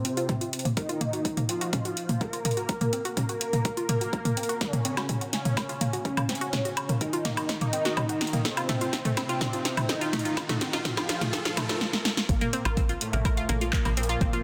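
A fat, detuned analog lead with phaser and delay carries the melody over bright, chorused analog pluck arpeggios under a filter sweep, backed by an up-front, overdriven deep house kit of handclaps, punchy snare, metallic hats, toms and woodblock plus a deep electronic kick, in this dark, dramatic melodic techno build-up at 125 BPM in Bb harmonic minor, where a drum fill and a very quiet riser lead to a drop at 12.3 seconds that brings in a tight, driving sequencer bass and, at 13.0 seconds, a faint, resonant drone with moving overtones, set in a lush hall reverb with a dense, heavily limited master.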